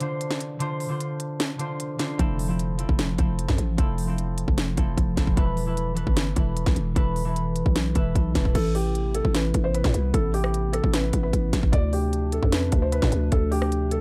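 An up-front trap drum kit with a hard-clipped kick, sharp snare and crisp hats drives this brooding, hard-hitting half-time hip hop and trap fragment in A minor at 151 BPM, first over a filtered, ringing concert harp, then joined at 2.2 seconds by a growling, buzzy 808-style bass; from 8.5 seconds a soft, felt-muted upright piano carries the melody over a deep, chorused analog pad in the background, while the harp stops at 9.7 seconds, all within a dark, dry production.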